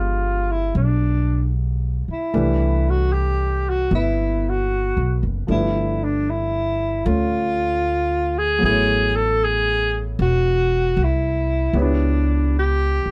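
A dry, closely recorded sound brings out fine detail in this tender, romantic jazz ballad fragment, which swings gently at 76 BPM in 4/4 and is tuned slightly sharp to A4 = 441 Hz. A breathy alto saxophone carries the melody up front with a mellow subtone, soft attack and light vibrato, while a warm baby grand piano adds natural, short-sustained accompaniment. A woody, thumpy pizzicato upright bass sits forward in the mix, and all three parts play together over chords moving from G7b9 through Cmaj7, G9 and Aadd9 to C#m7b5 across the full 13.1 seconds.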